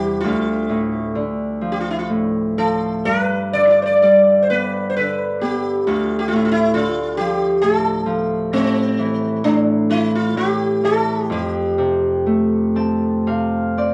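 Rubato phrasing in 3/4 drifts between 59 and 70 BPM, giving this Celtic slow air a loose, breathing pulse and a nostalgic, wistful mood. A plectrum-plucked sitar carries the melody up front, its buzzing tone haloed by shimmering sympathetic strings and a round, warm body. Beneath it, a fingerpicked Celtic harp spreads ringing accompaniment across a deep-to-high span, with a cassette-tape colour on its sound. The harmony moves through Dm, G, Dm and Am before settling on Fadd9, and the sitar falls silent at 13.2 seconds while the harp plays a closing fill from 12.3 to 13.9 seconds. Light reverb and small-room ambience give the home cassette recording an intimate feel, and the passage is cut from a longer piece.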